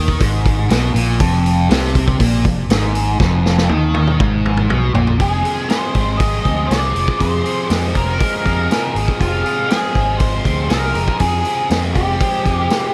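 A straight 4/4 pulse at 120 BPM drives this trippy, hypnotic psychedelic rock excerpt in F minor, resting on a single Fm chord. A vintage drum kit sits up front with a gritty, saturated studio-room sound: a tight kick, a medium-tuned snare, hi-hat and toms under a rolled-off top, with a drum fill from 3.2 to 5.2 seconds. Beneath it, a fingered electric bass supplies a round, punchy, dark low end, while a double-tracked overdriven electric guitar plays the picked riff up front, coloured by flanger and dub echo. At 5.2 seconds an octave-fuzz lead guitar enters with the melody between F4 and Eb5, pushed through wah, distortion and dub echo. The mix is echo-heavy, with light reverb and a sense of studio ambience.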